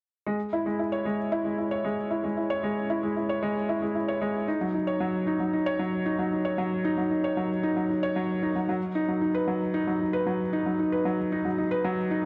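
A dark, warm production steeped in a wet scoring-stage reverb with a small-room ambience frames this cinematic, hypnotic electronica excerpt at 114 BPM in 4/4. A soft, intimate felt-muted upright piano sits up front playing a riff with delay from 0.3 seconds, moving through C#m7, D#m7 and G#m7. From 2.9 seconds a very quiet granular cloud pad adds blurred, detuned sustained chords with a slow attack and long release.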